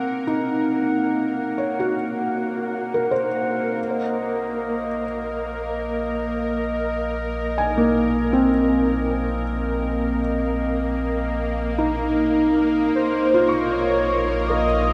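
Reflective and spacious, this ambient fragment in Bb minor drifts at 79 BPM in 3/4, with an intimate, felt-muted upright piano up front playing mellow arpeggios through diffuse delay, complete with audible action noise, over a nasal, bowed-like drone and a glassy glass harmonica that fades out as a round sub bass fades in at 3.8 seconds, when the harmony shifts from Gb/Bb to Bbmadd9, before a velvety synth lead with chorus, 12-bit sampler grit and delay carries the melody from 12.9 seconds, all set in a vast, echoing space with a cassette-tape character.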